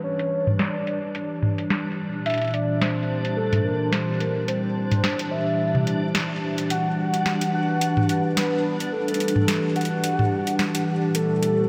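A booming analog drum machine enters at 0.2 s with a crisp snare, metallic low-pass-filtered hats and toms under delay, driving a swung 108 BPM 4/4 groove in this glitchy, intricate IDM fragment in G major. A hollow, flute-like pad holds sustained chords through a filter sweep, moving from G to Bbadd9, Gmaj9 and Bbmaj9, while a warbling, nostalgic lead carries the melody through chorus, cassette tape wear and tape echo. A faint concert harp arpeggio rings for the first 0.6 s, and a reversed, granular swelling texture glows beneath, all soaked in a huge ambient reverb for a dreamy haze.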